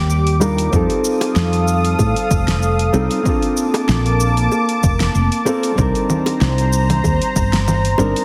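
A round, dark fretless electric bass sits up front in this relaxed sunset chillout excerpt in C dorian at 95 BPM, with a gentle 16th-note swing, moving through Ebmaj7, F7, Bbmaj7 and Cm7. A thumb-plucked nylon-string guitar, softened by a low-pass filter and tape echo, plays classical-toned accompaniment over a lush, detuned sawtooth pad with chorus. Tight, high-tuned bongos and an overdriven deep house kit of congas, hi-hat, shaker and a fat snare fill out the groove, while a punchy overdriven electronic kick enters at 0.7 seconds and stops at 7.5 seconds, all under a moderate plate reverb and a heavily compressed, radio-like sound.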